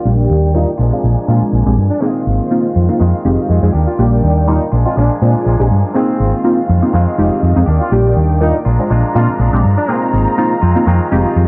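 A round, punchy hollow-body bass anchors this groovy, funky house excerpt at 122 BPM with a light 16th-note swing, under a chorused, phased polysynth comp with cassette-tape colour, a twangy clean direct guitar riff carrying 12-bit sampler grit, veiled con sordino strings holding sustained chords, and a brilliant, tight horn melody that drops out at 9.9 s, over a repeating Ebmaj7, Bb7, Ab6, Fm7 progression with a filter sweep and a moderate echo chamber reverb.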